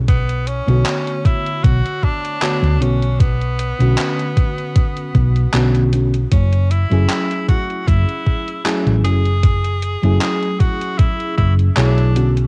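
Nostalgic, hazy vaporwave built on a Bm9 to F#m9 change, where a round, dark hollow-body bass and a thumpy electronic kick sit up front beneath gated drum-machine handclaps and hi-hat, a dreamy, detuned FM electric piano with a soft pad layer shimmers with tremolo and chorus, and an edgy jazz-style tenor saxophone solo with vibrato and scooped notes pushes forcefully through tape echo, all wrapped in the warm grain of a home cassette recording.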